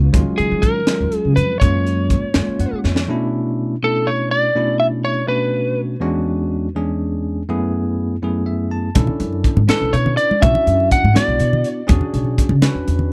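Electric jazz fusion in 6/8, funky and driving, cut from a longer piece, with a bright, bell-like tine electric piano up front carrying the chords throughout and adding fills before the harmony settles at 3.1 s and again before 9.0 s. A dark, slightly broken-up lead guitar states the picked, compressed melody over woody pizzicato upright bass and a crisp, punchy drum kit with a high-tuned snare and a drum fill at 2.8 s. Bass and drums drop out after the opening and return at 9.0 s along with thin-skinned, damped congas sitting dry in the background, all in a light reverb.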